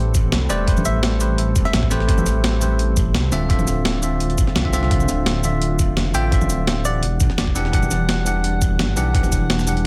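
Lush and rolling, this liquid drum and bass excerpt moves through Am9, Dm9 and Em9, with a bell-like tine electric piano treated with tape echo and a very quiet, glassy FM pad holding sustained chords over a deep, rumbling detuned saw bass that sits up front with tube saturation. A gritty, pitched-up breakbeat kit of snare, hi-hat and cabasa pairs with a thumpy electronic kick, both compressed and carrying small room ambience, while very quiet, distant congas add acoustic texture. A hollow, bouncy square pluck with chorus and delay carries the melody in two short phrases, first entering at 0.5 seconds and returning at 6.1 seconds.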